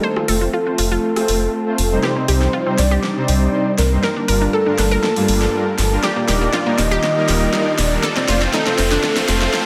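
This emotional, expansive progressive house build-up opens on a round, full-bodied octave-layered synth lead carrying the melody through chorus, phaser and digital delay. It sits over an airy, breathy pad with vintage 12-bit grit and a bright, punchy unison pluck tracing arpeggios through its own delay. Almost at once a pop drum kit with a fat, overdriven snare and warm hats joins, along with smooth supersaw stabs under a filter sweep and a deep analog bass thickened by tube saturation, and the drums play a fill from 2.0 seconds. A very quiet riser enters at 5.7 seconds as the chords move from F through Cm, Gm7 and Ebmaj7 back to F, inside a moderate digital room reverb.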